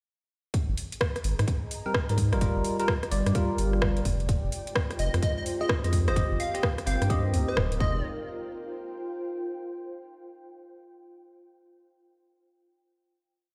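This is a skippy, late-night UK garage piece in a two-step style at 128 BPM in F dorian, its 16ths swung so the groove skips from 0.5 seconds until a final note rings out at 8.0 seconds. A tight, up-front electronic kick holds a four-on-the-floor pulse, while a garage drum kit adds overdriven, metallic closed and half-open hats and rim clicks in a swung, skipping pattern. A deep, saturated sub bass plays a syncopated line underneath, and a bell-like tine electric piano cuts through with clean, syncopated chord stabs in drop-2 voicings, coloured by phaser and tape echo. Behind them, an ethereal, airy pad drifts through slowly shifting chords with ensemble chorus, built-in reverb and sidechain pumping, and from 4.6 seconds a soft, silky string machine adds mellow sustained chords in the background. A punchy, catchy unison lead built from detuned square and sine waves with a noise layer and filter sweep arrives at 5.0 seconds with short phrases through tape echo, and the whole track sounds as if played on a big sound system in a bare stone room.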